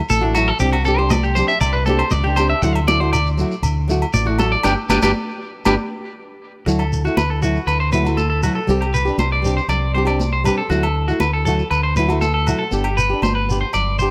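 Highlife guitar band music at 119 BPM in D mixolydian, sunny and danceable, cut from a longer piece and heard in a small room with light reverb. A twangy, clean electric guitar plays up-front arpeggios through tape echo and takes a solo over the opening 6.7 seconds, with a band accent from 4.6 seconds, while a round, punchy fingered electric bass sits forward and a bright, boxy flamenco guitar fingerpicks accompaniment with audible finger squeak. A grainy shekere plays alongside high-tuned congas struck with hard hands and ringing agogo bells, the latter two set in the background, as the chords cycle through Dadd9, Csus2 and G.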